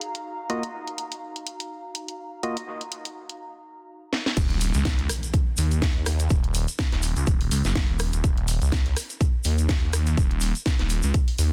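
A dense, heavily limited modern master with digital ambience frames this swaggering, gritty bass house passage: a low-pass-filtered, tape-warm garage kit with a cracking snare, a breathy chorused pad and hollow, percussive organ stabs with dub echo open it, then the drop at 4.4 s brings a thick, swirling detuned saw bass with phaser, tube saturation and sidechain pumping, a punchy up-front kick, a grainy, bright egg shaker and a very quiet electronic impact.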